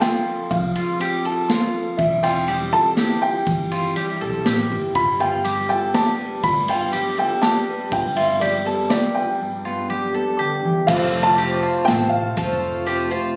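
A straight 121 BPM pulse in 3/4 drives this anthemic, nostalgic indie folk passage, cut from a longer piece. A dark, mellow upright piano carries the melody over a full-bodied fingerpicked steel-string guitar, double-strung mandolin arpeggios, woody pizzicato upright bass and a distant, roomy unplugged kit played with bundle sticks and a punchy kick. At 10.9 s the fingerpicked guitar gives way to a shimmering, octave-doubled twelve-string with audible finger squeak, a reedy tonewheel organ turning on a slow rotary speaker in the background, and a grainy egg shaker, all heard as if captured on a phone in a club-like room.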